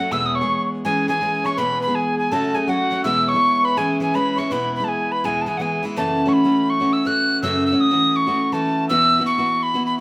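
A live-in-one-room sound with moderate large-studio reverb frames this lively Celtic folk tune, cut from a longer piece and moving at 164 BPM in 4/4 with a swung eighth-note feel. Up front, an airy, close-miked tin whistle with a crisp, chiffy attack and vibrato carries the melody over a bright, picked steel-string acoustic guitar, while a reedy, mellow accordion with a vintage tone adds a second line until 5.8 seconds. The harmony moves among E, C#m/E and F#m, then shifts at 6.0 seconds to F#m7 and settles on Esus2.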